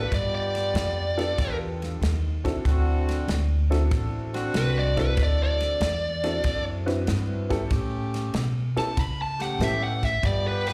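A smooth, overdriven lead guitar solo opens this laid-back, soulful electric blues shuffle over jangly, detuned honky-tonk upright piano and a dark, thumpy pizzicato upright bass, with jazz-style horn stabs and an airy country drum kit of punchy kick, snare and ride joining at 0.1 s, the guitar, piano and horns carrying slapback echo, the band heard as a live gig through the venue's PA with club reverb, and the piano dropping out at 10.0 s.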